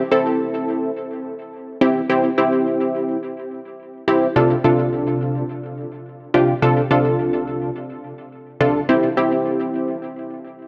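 A dark, cozy production bathes this short pop fragment, cut from a longer piece, in the long tail of a concert hall reverb. A lone funky polysynth comp sits up front from 0.0 to 10.0 s, its punchy, nasal, detuned tone given a mellow shimmer by chorus and tape echo as it moves from C to Dm/C and back to C. The mood is nostalgic and wistful, at a straight 106 BPM in 4/4 in C major, tuned to A4 = 439 Hz.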